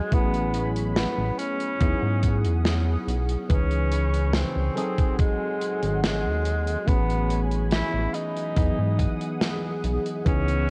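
Hazy and nostalgic, this slow vaporwave fragment at 71 BPM, cut from a longer piece, drifts through Amaj9, Emaj9, C#m7 and G#7b9 as a mellow, vintage-toned tenor saxophone sings the melody with vibrato and tape echo over a worn, slightly out-of-tune tine electric piano carrying analog chorus and 12-bit sampler grit. A thick, detuned unison pad with chorus and phaser sits bright in the background, while a glossy, pulse-width-modulated synth bass sits up front beside an overdriven, thumpy electronic kick. Hi-hat and a medium-tuned snare from a polished studio kit add gated reverb and sampler crunch, and the whole mix carries a cassette-tape sheen with light small-room reverb.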